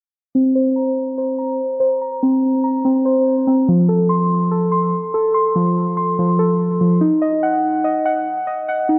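Over a half-time hip hop pulse, this tense, menacing fragment of a longer piece features muted, felt-like synth keys playing dark, intimate arpeggios up front from 0.3 to 9.0 seconds, shaped by chorus, a low-pass filter sweep and delay, through chords of Bbsus2, F and Ebm, all in a light reverb with a digital ambience.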